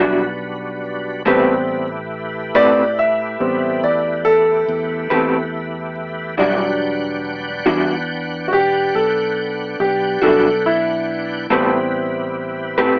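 A rough home-demo mix with a small-speaker sound and moderate studio reverb frames this smoky, soulful 12/8 blues, cut from a longer piece, where a bright, up-front grand piano solos for the full 13.0 seconds over Em9 and Am9 chords, backed by a slightly broken-up, lo-fi electric guitar with tremolo through a small old amp, a gritty overdriven tonewheel organ holding thick sustained chords through a slow rotary speaker and chorus vibrato, and a dark, round fretless electric bass.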